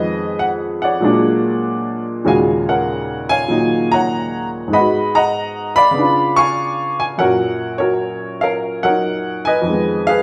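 Solo jazz on upright piano, moody and cool, with a swung eighth-note feel in 4/4. The piano plays the whole passage by itself, ranging from Eb2 to Db6 with a woody, polished tone that sits present and up front. Its harmony moves from Fm7b5 and Bb7alt into Ebm11, then through Abm7, Db7b9 and Gb before returning to Fm7b5 at 9.6 seconds. A wet large-studio reverb with a 1.2-second tail surrounds the instrument and gives the sense of a live performance in one room. This 10.2-second passage is cut from a longer piece.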